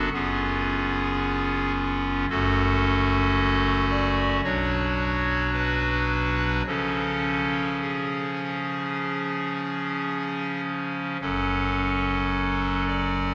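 A pipe organ's clarinet reed stop sounds alone from the start, its hollow, baroque-voiced tone placed up front as it opens on a C#7 chord over F# before settling into F# minor. This dark, solemn chorale-style classical excerpt moves freely at about 54 BPM in 4/4, spanning F#1 to D5 and passing through B minor and C# before returning to F# minor at 11.2 seconds. A long, wet church reverb surrounds the organ, and a faint mains hum sits beneath it.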